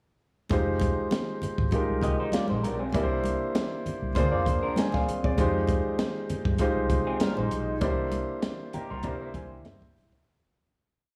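A smooth mid-tempo soul groove at 98 BPM in 4/4, lightly swung on the sixteenths, drives this short, lush 1970s-style soul piece in F dorian, its bittersweet mood carried by chords moving from Fm9 through C7 and Bb7. A compact cocktail kit with a high-tuned snare and punchy kick, a round, foam-muted fingered bass line with ghost notes and chromatic approaches, and thick-skinned congas in the background, slapping on two with open tones on four, support an intimate, up-front grand piano playing rootless voicings in half-note chord rhythm with grace notes. From 2.0 s a lo-fi, slightly broken-up electric guitar with phaser adds short fills in sixths between phrases, and as the piece fades out from 7.8 s the piano closes with a fill at 8.4 s, set in small-room ambience with light reverb.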